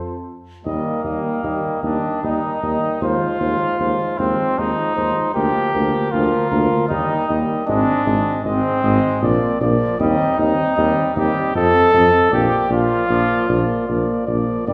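Heard from further back in a reverberant recital hall, this brief cut from a longer classical brass quintet piece has a warm, noble mood, moving in a flexible, rubato 3/4 at about 77 BPM in E-flat major before turning toward B-flat major around 10.0 s. A mellow trumpet with light vibrato carries the melody while a clear flugelhorn sits up front with the second line. The French horn, with vibrato, and a brilliant, distant trombone entering at 0.6 s fill in the accompaniment from the background, above a punchy tuba bass placed up front.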